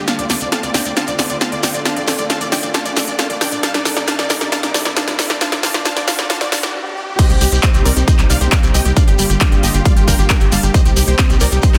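Emotional, euphoric uplifting trance at 135 BPM in C dorian, cut from a longer piece, where a punchy, detuned supersaw stab carries the melody with digital delay over veiled con sordino strings, a tight sawtooth sequencer bass, a round, chorused analog pluck arpeggio under a filter sweep, a grainy shekere, a crisp big-room drum kit with a soft-clipped snare and a very quiet riser, building through a drum fill to a brief stop at 6.7 seconds before the drop at 7.2 seconds brings in an up-front, tape-warm electronic kick, with sidechain pumping on the stab, strings, pluck and bass, and light reverb on a dense, heavily limited master.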